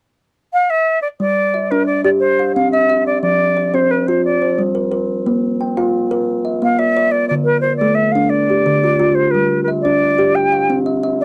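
A woody, ringing kalimba enters at 1.2 seconds with soft fingertip-plucked arpeggios, joining an airy silver concert flute that carries the expressive, vibrato-touched melody from 0.5 seconds in this rippling, warm piece of southern African traditional music built on an mbira-style interlocking cycle. It moves at 118 BPM in a straight 12/8 in G equiheptatonic, with the harmony passing through G, C, Gm, Bb and Dm. The sound is a dry, close 1970s-style studio recording with light reverb.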